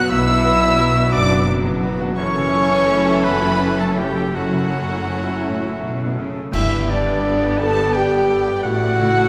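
A slow, bittersweet orchestral film cue in 6/8 at 56 BPM opens at once with a lush, vibrato-rich violin section carrying the melody, shadowed by a bright solo oboe, a pure, hollow flute and a second, more distant violin section with soft attacks and portamento, while a brilliant piano, focused violas, ringing harp arpeggios and punchy French horn chords fill out the harmony over rich cellos and double basses entering at 0.1 s. The rubato pulse gives the sorrowful Bm-to-F#m7 opening an unhurried, breathing feel. At 6.5 s the music turns to G with an ensemble accent, where clash cymbals with bright crashes and a concert bass drum sound until 7.9 s before the passage moves to A, all within a reverberant concert hall.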